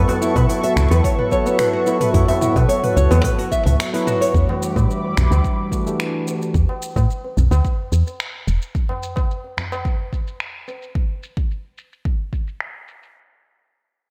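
Meditative and hypnotic, this organic downtempo fragment moves at 109 BPM in a straight 4/4, centred in E dorian and shifting from F#m7 to Em7 at 4.3 seconds. A tine electric piano, clean and heard as if through built-in speakers, plays accompaniment with analog chorus, delay and sidechain pumping, while a mellow analog pad of detuned sawtooth and triangle tones with a sub octave swells in slowly on sustained chords, also chorused and pumping. Fingerpicked nylon-string guitar arpeggios, small and delayed, ring out until 4.3 seconds, and a woody, round FM bass with a fast, decaying attack sits dark and up front until 8.6 seconds. The rhythm comes from an electronic deep house kit of finger snaps, smooth low-passed hi-hat, shaker and toms, joined by a deep, layered electronic kick up front and a low-tuned, saturated tabla with a short ring. A moderate plate reverb soaks the dreamy mix, leaving the drums and percussion to carry on after the melodic parts drop away.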